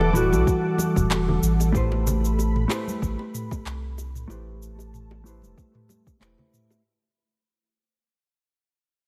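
Sunset chillout with a smooth, warm mood, this brief fade-out excerpt is cut from a longer piece and sways on a light swing over Em11 and Am9 chords. A dark, clean electric guitar plays a short fingered melody with digital delay until 1.4 seconds, while a compressed hollow-body jazz guitar accompanies through a low-pass filter and delay, and a lush, detuned unison pad holds bright sustained chords through chorus and phaser. Underneath, a round, deep sub bass with tube saturation sits up front, ringing bongos and congas played with hard hands stay in the background, and an overdriven electronic R&B kit with cabasa, handclaps and toms joins at 0.2 seconds, with a soft overdriven electronic kick entering at 0.5 seconds, all within a light digital ambience.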